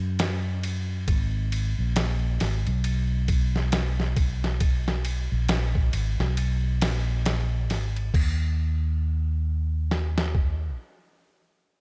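Dark and brooding, this trip hop excerpt moves at 68 BPM in 4/4 with a 60% swing on the sixteenths, as an up-front, growly fingered electric bass ranging from Ab1 to Gb2 plays from 0.0 to 10.7 seconds beside a gritty, pitched-down boom bap sampler-style kit, compressed and tape-warm with a thumpy kick, medium-tuned snare, ride and crash, all dry in a reverb-light sound that shifts into a new section at 8.1 seconds.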